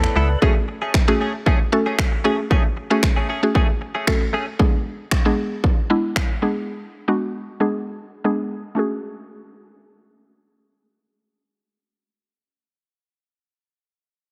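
A lightly reverberant, energetic dance-pop fragment starts with all its parts at once: an up-front house kit whose punchy, overdriven kick and finger snaps drive the groove until 6.3 seconds, a woody, round synth pluck with a fast attack, chorus and sidechain pumping carrying the accompaniment, and a twangy, clean electric guitar recorded direct picking a bright, scooped riff through 4.5 seconds. A filter sweep runs through the first section before the harmony moves from a minor add9 chord to a diminished one and back.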